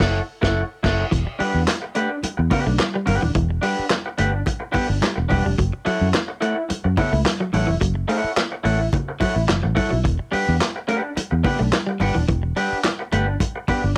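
Driving and hypnotic, this funk excerpt moves at 107 BPM in a straight 4/4, set in E dorian and tuned slightly flat at A4 = 439 Hz. The full band hits an accent at the very start, with the chords sitting on F#m7 before settling into an alternation of Em9 and F#m7. Up front, a twangy, slightly broken-up electric guitar through a small old amp plays accompaniment with a bright, compressed bite, touched by cassette tape and plate reverb. A round, foam-muted fingered bass sits low and dark alongside a dry soul drum kit with a tight kick, medium-tuned snare, dark cymbals, hi-hat, crash and handclaps, its top rolled off and its sound touched by cassette tape. A clean, picked guitar riff enters at 1.1 seconds in a low register, and congas with a thin, saturated skin and soft hands join in the background at 1.7 seconds. The whole has the light reverb and character of a home cassette recording.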